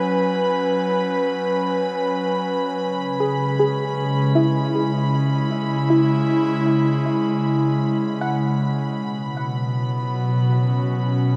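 Ambient music at 78 BPM in a spacious, reflective mood, cut from a longer piece, set in a cathedral reverb with a long 6.1-second tail. An airy, breathy pad sits up front with detuned, chorused sustained chords moving from F#5 through C#m7 to Badd9, while a dark, reedy violin section with a gut-string tone and light vibrato fades in from a distance on a held B5. From 3.2 to 10.6 seconds, a soft, round pluck plays gentle arpeggios in the background, colored by analog chorus and tape echo.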